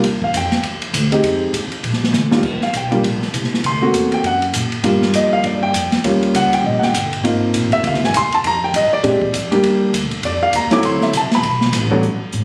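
Captured on a phone in a reverberant club-like room with compression, this swinging, warm fragment of an up-tempo jazz piano trio at 200 BPM in Eb major features an intimate, up-front grand piano soloing with audible action noise from 0.0 to 12.0 seconds, a woody, thumpy pizzicato upright bass on gut strings, and an airy, polished acoustic drum kit with dark cymbals, a boomy kick and a drum fill at 2.1 seconds, moving through changes such as Ebmaj7, D7b13, Ab69 and Bb13.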